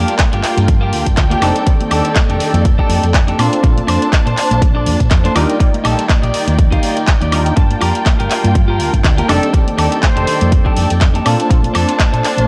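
This sensual, nostalgic slice of filtered disco house opens on a full bed at once: a funky, detuned sawtooth polysynth comp with a plucky filter sits in the background, while lush bowed strings hold sustained chords with a distant, vintage 12-bit grit. A clean, picked electric guitar riff and a round, dark hollow-body bass enter at the same moment, the bass carrying transformer saturation. Around 0.1 s a house kit with bright hats, handclaps and woodblock arrives alongside background tambourine and congas, and a punchy, up-front electronic kick joins at 0.2 s. At 122 BPM in 4/4 with a light 16th-note swing, the harmony cycles through Gm7, F13, Bbmaj9 and Ebmaj7, with the synth, strings, guitar, bass and percussion all pumping against the kick and muffled under a low-pass filter. A smooth-topped, jazz-style trumpet section slips in briefly from 9.3 s to 10.7 s. The whole excerpt sounds dry and gritty, with a cassette-tape character and a slightly flat A4 = 439 Hz tuning.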